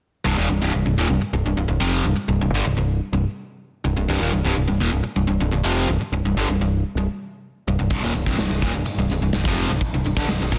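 A straight 4/4 pulse at 126 BPM drives this menacing, heavy hard rock passage in C minor, cut from a longer piece and sitting on a single C minor chord throughout. A cranked stack guitar opens the riff at 0.2 seconds, its bright, overdriven, double-tracked tone placed up front and ranging from C2 to Bb3. A growling picked electric bass joins almost at once, its overdriven, direct-and-amped sound adding a warm low weight between C1 and Bb1. At 7.9 seconds a big acoustic rock drum kit arrives with hi-hat, a punchy kick and a medium-tuned snare, heard up front in a bright stone room. Light reverb and a small room ambience frame the parts, and the dense, heavily limited modern master keeps the whole sound thick and pressing.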